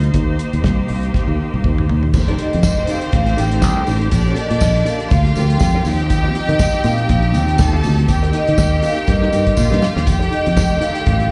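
Disco with a driving, glamorous feel and a light swing, this piece is cut from a longer performance and sounds like a live gig heard through a venue's sound system, with club reverb and a dulled top end. From the start, a dry, damped 70s drum kit with dark cymbals, a tight kick and toms sits under a growly, up-front fingered electric bass, while a smooth, lush string section holds sustained chords over a Cm7 opening, and a drum fill at 1.1 seconds leads into the next section. At 2.1 seconds the arrangement fills out: a mellow, compressed electric guitar with tremolo and slapback echo sits in the background, and a jingly tambourine sounds from a distant large room. A moment later, a second, more focused and far-off string line adds bowed vibrato. Just after, a close-miked vibraphone played with medium mallets carries the melody in a narrow upper range, its metallic ring and slow motor vibrato touched by slapback echo. 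The harmony moves through F13, Bb6, Eb69 and Cm7/Eb before a second drum fill sets up a return to F13 near the close.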